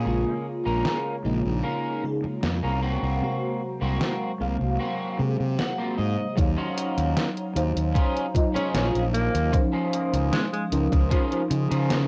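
Cassette-worn and hazy, this home-recorded vaporwave excerpt drifts at 76 BPM in Eb dorian with a melancholic mood. It is built on a lush, dark FM electric piano with chorus, delay and plate reverb, a warbling, detuned tape-like pad in the background, and a slightly broken-up picked guitar riff carrying chorus, delay and 12-bit sampler grit, all over a fuzzy, overdriven fingered bass up front. A detuned 8-bit drum machine brings hi-hat and a medium-tuned snare at 0.8 s, while a filter sweep colours the pad and a clean guitar fill arrives just before a thumpy electronic kick enters at 6.4 s as the chords turn from Bbm7 and Ab9/C to Ebm9 and Dbmaj9; at 8.6 s a breathy alto saxophone with subtone, light vibrato, tape echo and plate reverb plays a short jazz-style solo.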